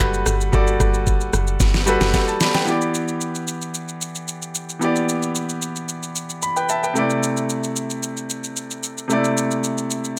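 A light reverb surrounds this soulful, deep amapiano excerpt, cut from a longer piece and moving at 112 BPM in E minor with a straight 4/4 feel. A bright grand piano sits up front as accompaniment throughout, its brilliant, intimate, polished tone carrying long sustain and audible action noise as it moves from Gmaj9 to Em7 at 2.7 seconds and on to C69. A deep, round log drum bass with a fast attack and dark, decaying FM character plays only from the opening until 2.1 seconds, during the drop. The electronic R&B drum kit, also up front, runs the whole way with a knocking kick, deep snare, rim click, shaker and handclaps, and it plays a fill leading into the second section. Later the piano takes a short fill of its own just before the final chord change.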